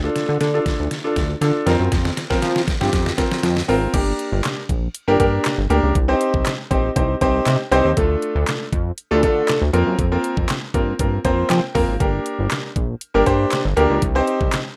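Dance-pop at 119 BPM in a straight 4/4, this driving, energetic passage is cut from a longer piece and opens with a build-up carried by a drum fill before the drop lands at 3.9 seconds. A bright concert grand piano plays the accompaniment, brilliant and present with deep bass and short sustain, its sound shaped by sidechain pumping and a low-pass filter. Underneath, a chorused synth bass blends pulse-wave and sawtooth tones with pulse-width modulation and a filter pluck, giving a retro, glossy, evolving line that also pumps with the sidechain. The pop drum kit is electronic and layered, with a knocking kick, deep snare, hi-hat, handclaps and crash cymbal, all pushed through overdrive and sitting up front in the mix. The harmony cycles through Dm, Fsus4, Gm and Cm, and the piano steps forward with a short fill at 11.0 seconds. A moderate small-room reverb and a rough home-demo mix give the track a close, unvarnished feel.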